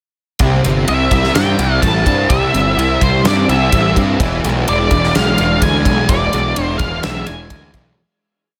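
Light reverb and studio ambience surround this hazy, dreamy shoegaze and dream pop rock piece at 126 BPM in C major, which moves from C to E7 across a single verse and fades out from 6.1 seconds. A double-tracked fuzz guitar plays picked arpeggios through analog chorus while an overdriven fuzz bass drives steady eighth notes, both up front, over a gated 80s drum kit with a fat snare, tight kick and bright ride cymbal in an airy big room. From 0.9 seconds an octave-fuzz lead guitar adds a dark, motif-based melody of song phrases through tape echo.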